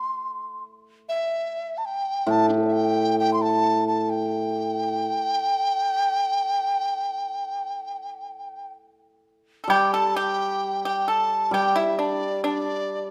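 A mellow, airy large dizi with a buzzing membrane and vibrato carries the expressive melody of this festive, graceful Chinese traditional chamber fragment in G zhi mode, moving freely in rubato around 66 BPM, joined at 2.3 seconds by a shimmering, ringing hammered dulcimer accompaniment, then at 9.6 seconds by a bright, dry, percussive pipa second line and, at 9.7 seconds, a woodblock sitting in the background, all set in a moderate recital-hall reverb.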